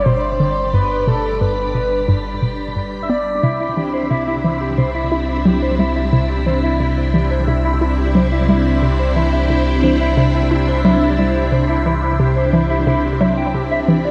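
Drenched in a wet spring reverb with a long 2.7-second tail, this echo-heavy recording of ambient, sequencer-driven space music feels expansive and luminous, and it is cut from a longer piece. A hollow, bouncy square pluck with a fast attack and short decay carries the riff, its chorus and delay making it the most forward voice. Beneath it, a round sine sub bass sits deep and up front, while a swirling, vintage string machine fades in with slow-attack sustained chords colored by ensemble chorus and phaser. A shimmering, retro pulse-width lead with vibrato sings the melody only until 3.4 s, where the harmony moves from G to Cadd9 and a dark, clean, fingered electric guitar takes over with delayed arpeggios. Throughout, an airy, breathy, wind-like tuned noise texture hovers softly in the background, wrapped in its own built-in reverb.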